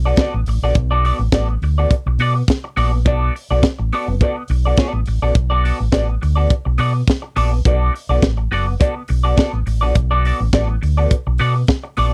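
A dark, round fingered electric bass opens this dry, close disco groove in B minor at 104 BPM, joined by a compressed, slightly broken-up electric guitar with wah and then a tight funk drum kit with a high-tuned snare and tight kick, all sitting on a single Bm7 chord for a sultry, driving feel.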